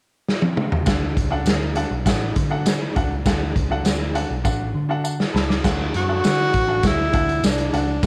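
A raw garage drum kit opens this uplifting, joyful piece of 1960s-style soul with a fill at 0.3 s, its punchy kick and medium-tuned snare sitting up front in a bright stone room. At 0.9 s a brilliant, woody upright piano, a round, foam-muted picked electric bass and a jingly tambourine, close and dry in the background, join over a D chord, and the piano adds a fill just before the next section. A breathy tenor saxophone enters up front at 6.0 s with a jazz-style solo line full of vibrato and scooped notes, all in a lightly reverberant space.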